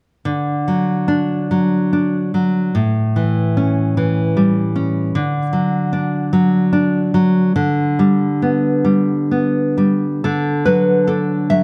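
A dark, full-bodied nylon-string guitar, fingerpicked and placed up front, carries this tender, nostalgic fragment of a romantic classical solo in D major, unfolding in a rubato 6/8 at roughly 41-52 BPM through D, A7, D and G/D before settling back on D as a brief new section begins at 10.2 seconds, the whole framed by a moderate scoring-stage reverb.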